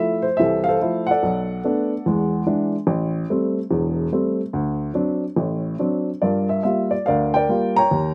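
An upright piano opens this short solo jazz fragment, heard up front with an intimate, woody tone and the audible noise of its action. The mood is relaxed, set at 144 BPM in 4/4 with a swung eighth-note feel that the playing stretches in rubato. The piano covers a broad span from E1 up to Bb5 and moves through Fmaj7, Bm7, E7, Am7, D7 and Gm7 in under nine seconds. Recorded outdoors, the natural sound carries only a light reverb and little sense of surrounding space. The passage runs from 0.0 to 8.1 seconds and is cut from a longer piece.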